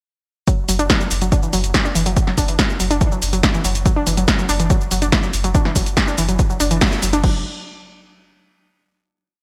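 A bright, 1980s-style digital sheen with light reverb frames this relentless, industrial peak-time techno piece at 142 BPM, where a tape-warm four-on-the-floor kick and a punchy analog drum machine with gated-reverb snare, hats, shaker and crash drive the drop beside a round sine sub bass, overdriven and pumping, rumbling on F#1 between the kicks, while a warbly, dusty, detuned pluck riff with chorus and delay cycles a 5-step loop drifting against the bar, all hitting a band accent at 6.8 seconds before a final chord from 7.2 seconds.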